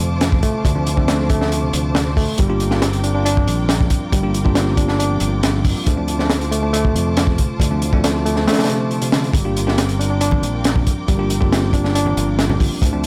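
Breakbeat at 138 BPM in G minor, this swaggering, energetic excerpt rides a crunchy, saturated breakbeat kit with a punchy kick and high-tuned snare up front, a growly fingered electric bass with tube saturation, a reedy electric piano riff with delay, bell-like tine electric piano stabs entering at 0.8 seconds in the background, lush bowed strings holding chords under vintage sampler grit and sidechain pumping, and soft, ringing congas appearing very quietly from 10.3 seconds, all over a Dm7 to Gm7 progression in light reverb.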